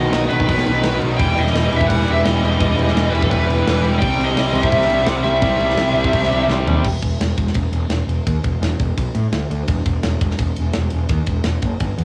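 Heavy metal at 170 BPM in E harmonic minor, aggressive and relentless, cut from a longer piece and captured as a dry home cassette recording with small-room ambience. A bright high-gain lead guitar carries the melody with tape echo over a double-tracked, up-front rhythm guitar riff, while a growly fuzz bass and a tight metal kit with medium-tuned snare drive underneath, the chords moving from B to Em to C. A drum fill at 6.5 seconds ushers in a sparser second section where both guitars have stopped by 6.8 seconds, so bass and drums carry on through a brief Asus2/B chord to the end.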